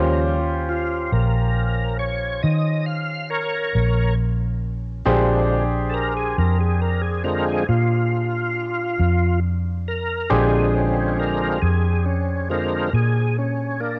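A gritty, overdriven tonewheel organ takes the solo throughout this laid-back, swaggering slow blues at 46 BPM in 12/8, its thick chords colored by chorus vibrato and a slow rotary speaker over a brilliant baby grand piano with audible action noise and long sustain and a dark, round, foam-muted electric bass sitting up front, moving from Eb13 to Bb13 at 5.1 seconds in this cut from a longer piece, captured as a home cassette recording with light reverb and small room ambience.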